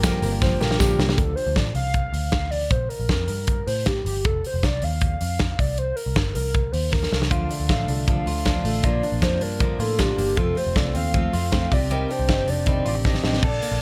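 A warbling, detuned lead carries the melody through this youthful, nostalgic stretch of jangly indie pop, its chorus, tremolo and tape echo lending it a hazy, vibrato-laden glow. Up-front drums with a punchy kick and bright cymbals drive the song with fills, over a round, foam-muted electric bass, while a compressed, direct-recorded clean electric guitar plays arpeggios and a jumbo steel-string acoustic, picked with audible finger squeak, sits in the background. Both guitars drop away after the opening and return at 7.3 s, and a very quiet, dark, woody string section and a jingly tambourine appear at the start, with the strings returning at 13.4 s, all in light reverb.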